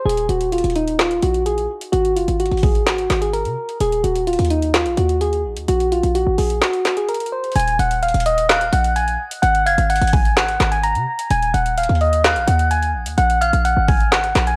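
A half-time trap groove of knocking kick, woody snare, handclaps and metallic hats anchors this melancholic, dark hip hop excerpt, where soft, round electric-piano-like synth keys with chorus and a low-pass filter carry the melody over a punchy, tight 808-style bass, a brief break arrives at 6.6 seconds, and an eerie, inharmonic FM bell slips into the background at 8.5 seconds, all wrapped in light digital reverb and the warbling pitch drift of worn cassette tape.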